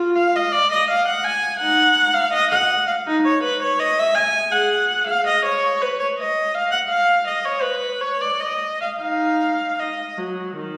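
Loosely pulsed in four with uneven, rubato beats, this brief classical fragment is a baroque-style suite movement for unaccompanied viola, grave and introspective in mood. A single bowed viola plays throughout its 10.8 seconds, its tone rich and focused with vibrato, ranging from low in the instrument to high in its upper register. The player sits up front within the wet reverb of a recital hall, whose resonant space surrounds each phrase.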